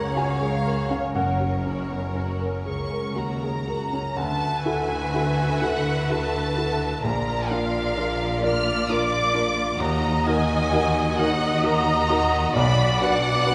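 Uplifting and hopeful, this short excerpt from a cinematic, emotional film score moves at a slow, rubato 39-45 BPM in 6/8, with a lush, vibrato-rich violin section carrying the melody over a clear second violin line set in the background. An intimate grand piano, its action noise audible, shares the accompaniment with a distant viola section, while a smooth, even cello section and a focused double bass section anchor the low end. The chords shift from F# to Dadd9 at 4.2 seconds, later passing through A# and D#m to Bm, all bathed in the wet reverb of a recital hall or church.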